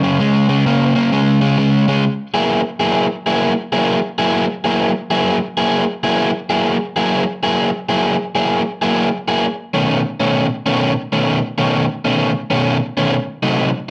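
A crunchy, overdriven electric guitar opens this gritty, laid-back blues excerpt, picked up front with a slapback echo as a lone solo part reaching from F#2 to G#4 in F# mixolydian. It swings at 130 BPM in 4/4, moving from a C#5 chord to F#9 at 2.0 seconds and then to B9 before touching a Cdim7 near the close at 13.1 seconds. A moderate club reverb gives the sound a lived-in room around it.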